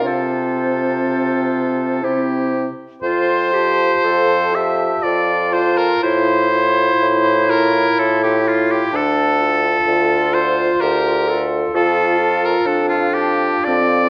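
A tender, lyrical excerpt of a slow romantic classical movement for wind quintet in F major opens with all five players together, moving in a rubato 3/4 at 57-66 BPM: a very quiet, distant, hollow flute sings the melody high above a clear, up-front oboe on the second line, while a bright clarinet and a horn with vibrato set in the background fill the accompaniment over a warm bassoon bass with light vibrato, all bathed in recital-hall reverb and the worn, warbling pitch drift of old cassette tape.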